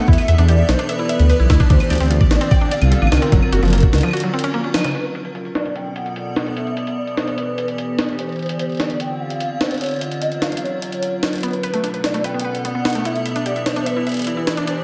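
A deep, rumbling detuned saw bass and a thumpy, gritty kick push this melancholic, cerebral IDM passage up front before both drop away around 4 seconds, leaving a short break and a band accent. Throughout, an icy, crystalline glass pad holds sustained chords beneath a warbling, nostalgic lead melody colored by tremolo, chorus and tape echo, while a compressed, pitched-up jungle sampler kit of claves, hi-hat and snare sits low-passed and quiet, caught in a filter sweep from 4.9 seconds. A woody, round mallet-like pluck spins chorused, echoing arpeggios at the opening and returns at 11.4 seconds, all within a dreamy mix soaked in plate reverb.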